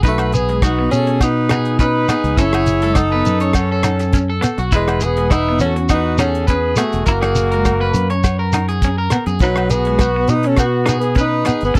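Highlife guitar band music in a joyful, carefree mood, this short cut from a longer piece moves at 102 BPM in a straight 4/4, cycling through B, F#madd9, E and F# before returning to B. A damped 1970s drum kit with a tight kick, hi-hat and rim click anchors the groove, joined by a dark, round, punchy fingered electric bass sitting up front. Two electric guitars play through the whole passage: a slightly broken-up, twangy one picks arpeggios through tape echo, while a bright, clean, compressed semi-hollow guitar adds accompaniment with tremolo further back. From 0.1 seconds a breathy tenor saxophone carries the melody up front with vibrato, a soft attack and scooped notes in a jazz style, while in the background a clear trumpet with light vibrato and a smooth top plays a second line. A grainy, mellow shekere and ringing agogo bells fill out the percussion, all captured in a dry, close 1970s-style studio sound with little reverb.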